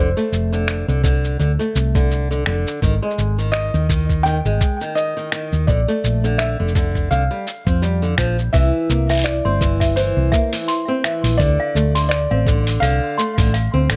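A lightly reverberant, intimate mix opens this playful, hopeful folktronica piece, which moves in a gently swung 4/4. A felt-muted upright piano carries the melody in a soft, mellow voice roughened by vintage 12-bit sampler grit, with plate reverb and tape echo around it. Alongside, a fingerpicked flamenco guitar plays acoustic arpeggios through its own tape echo. Up front, a hollow-body short-scale fingered electric bass sounds dark, round and punchy, joined by a muffled, pitched-down lo-fi sampler-style kit of cabasa, finger snaps and hi-hat, and from 1.0 seconds by a thumpy electronic kick, both parts compressed and tape-tinged. At 8.5 seconds the music moves into a new section, where a clanky, bell-like toy piano with wooden hammers adds a slightly out-of-tune second line, dressed in plate reverb and tape echo. The chords travel from F6 through Ab5, Bbmaj7 and C9sus4 before reaching C7 and Dm7.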